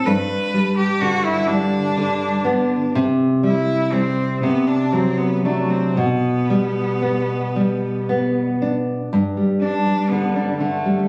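Opening together, a dark, full-bodied fingerpicked nylon-string guitar and a clear, smooth bowed cello with vibrato, both up front, shape this tender, warm romantic duo in G major, a slow, rubato 6/8 at about 38-42 BPM counted in dotted quarters, where the cello carries an even melody over the classical guitar's accompaniment through chords such as G, C5, D7/C and G/B, all heard in a moderate recital-hall reverb captured on a phone in the room, in a passage cut from a longer piece.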